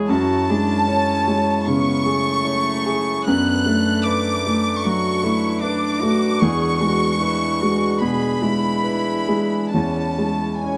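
A natural-sounding baby grand piano opens this longing, reflective neoclassical fragment in F# minor, joined at once by a clear, nasal solo cello with tape echo as a floating second line and a reedy, breathing pedal harmonium holding mellow chords in the background. From 0.1 seconds an intimate chamber violin section carries the melody up front, bowed sul tasto with vibrato and a soft attack. The music moves at a rubato 75 BPM in 4/4 through F#madd9, Bm7/F#, E7 and C#m/E, with a light reverb surrounding the ensemble.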